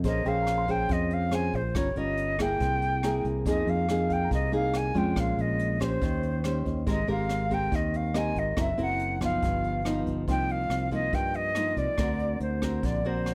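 A silver concert flute carries the melody in this wistful, melancholic bossa nova fragment, its airy, vibrato-laden tone tongued and set back in plate reverb yet still up front. Beneath it, a fingerpicked nylon-string guitar plays full-bodied classical accompaniment throughout, the occasional finger squeak audible, while a round, direct fingered electric bass anchors the low end. A jazz brush drum kit in an airy studio room keeps a straight 4/4 pulse at 141 BPM with hi-hat, rim click and a boomy kick. A clear concert grand piano adds very quiet high accompaniment from 0.0 to 5.2 seconds and again from 8.1 seconds. The harmony drifts through rich extended chords such as Bbm9, Gm7b5 and Abmaj9 before settling into C minor at 10.3 seconds, where a second section begins, all under a light reverb in a piece cut from a longer work.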